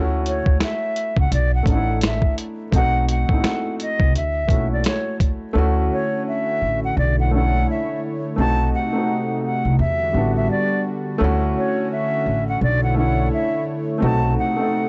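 A soft, mellow felt-muted upright piano with cassette tape colour and a woody, gut-strung pizzicato upright bass open this dreamy, nostalgic lo-fi hip hop excerpt with a swung feel. Almost at once a breathy silver concert flute enters with a straight-toned, tongued melody, alongside a dusty, overdriven sampler-style drum kit of finger snaps, hi-hat, thumpy kick and snare that plays only until 5.4 seconds. At 5.5 seconds a smooth, detuned sawtooth pad with chorus brings in sustained chords over extended seventh, ninth and eleventh harmonies, all in a dry, gritty recording with light small-room reverb, a dulled top end, and the piano, bass, drums and flute placed up front.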